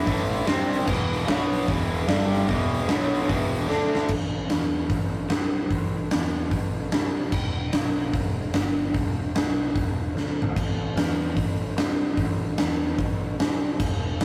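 Blues rock power trio with a southern rock edge, this raunchy, driving excerpt swings at 148 BPM in 4/4, opening on a cranked, double-tracked stack guitar riff that runs through power chords on A, C, E, B, G and D before dropping out at 4.1 seconds. A growly fuzz-drenched picked bass and a huge, punchy arena drum kit with bright cymbals and a medium-tuned snare carry on together to the end at 14.2 seconds, with drum fills at 3.7 and 10.1 seconds. The sound is a rough rehearsal-room recording with light reverb, guitar and drums up front.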